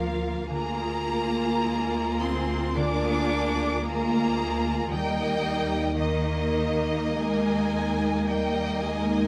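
A moderate scoring-stage reverb, with a decay of about 1.9 seconds, surrounds this brief, lyrical fragment of a slow romantic movement for symphony orchestra. The tempo moves freely with rubato between 46 and 57 BPM in 4/4, settling in Eb major as the harmony passes from Bb/D and Bb7/D to Eb at 4.9 seconds. A distant, expressive violin section carries the melody high above a second violin line with a soft attack, while a smooth, even viola section fills in the accompaniment, every string section bowing with vibrato. Beneath them the cello section, rich and the most present part, shares the bass with a warm double bass section. A fingerpicked concert harp rings out arpeggios in the background, adding to the serene, lush mood across the full 9.3 seconds.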